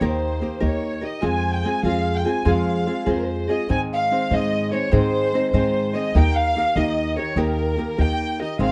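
A moderate studio reverb gives this short, 8.7-second cut from a longer mariachi piece a sense of space, with the violins and guitar sitting up front. In a straight 6/8 at 98 beats per minute on the dotted quarter, the mood is proud and festive, tuned slightly high to A4 = 441 Hz. A chamber violin section carries the melody between Bb4 and Ab5, its bowed ensemble tone warm and singing with vibrato. A small, fingerpicked nylon-string guitar with old strings supplies a woody acoustic accompaniment. Beneath them, a dark pizzicato upright bass strung with steel anchors the low end from Ab1 to Ab2. All three play throughout, moving through Eb, Fm and Ab before returning to Eb at 6.2 seconds.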